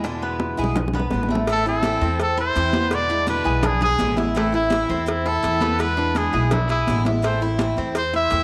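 A wet spring reverb hangs over this short cut from a longer Cuban son and guajira track, a danceable, sultry groove at 167 BPM in A harmonic minor, moving between E7 and Am. Up front, a woody, dark upright bass thumps out the low end on gut strings, while a Cuban tres plays metallic arpeggios on its double strings and a bright, fresh-stringed steel-string acoustic guitar picks out the accompaniment with audible finger squeak. In the background, high-tuned congas ring under hard hands, and round, low-tuned bongos and cowbell sit close and dry under softer hands. A drum fill runs from 0.4 to 1.5 seconds, leading into the next section, where a clear trumpet enters as the soloist. The trumpet carries the melody with vibrato and a smooth top, coloured by tape echo.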